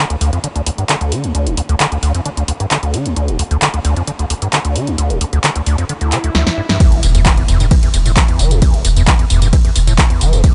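A squelchy, gritty acid bass riff opens this excerpt of driving peak-time techno, its resonant square-wave line pumping through an analog chorus while a filter sweep works across it for the first 6.8 seconds. Around it, a punchy analog drum machine sits up front with handclaps, hi-hat, ride cymbal, snare and tambourine, the snare carrying a tape-warm bite from a small room. The mood is dark and relentless at 132 BPM in a straight 4/4, rooted in E phrygian. A background swell builds from 6.0 seconds, a drum fill arrives at 6.3 seconds, and at 6.8 seconds the track drops with an electronic impact and a punchy kick drum thumping in. A thick, saturated triangle sub bass holding E1 joins a moment later, filtered and pumping beneath the riff. The dry, close mix keeps the top end rolled off, giving the whole drop a dense, murky weight.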